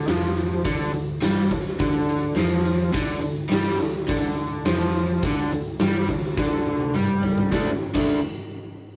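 A crunchy, double-tracked overdriven guitar riff sits up front in D minor from the first instant, with a round, hollow-body electric bass lurking in the background, in a swaggering, gritty classic rock excerpt at 105 BPM in a straight 4/4. A huge, punchy arena drum kit with bright cymbals joins almost at once, backed by a faint, jingly tambourine, all captured in a rough rehearsal-room sound with moderate ambience. A drum fill from 6.4 seconds leads the harmony from D minor onto a D power chord at 7.5 seconds.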